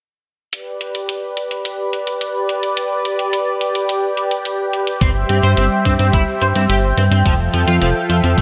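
A smooth, detuned sawtooth pad sits up front from 0.5 seconds, holding sustained chords with chorus and a sidechain pumping effect in this nostalgic, uplifting synthwave excerpt in straight 4/4. An electronic, sampler-style hi-hat, re-recorded in a large room, ticks alongside it from the start. At 5.0 seconds the harmony moves from G to C over G, and the rest of the band arrives: a thumpy electronic kick, a glossy, dark synth bass blending pulse and sawtooth waves with a fast-attack filter pluck, tube saturation and its own pumping, and a twangy, picked electric guitar riff at the edge of break-up, treated with ensemble chorus and digital delay. The bass is the loudest part, sitting up front beneath the pad. An Fmaj7 chord arrives at 7.3 seconds, adding a wistful lift before the clip is cut off. A lush hall reverb and bright 1980s-style digital production give the whole a spacious, retro sheen.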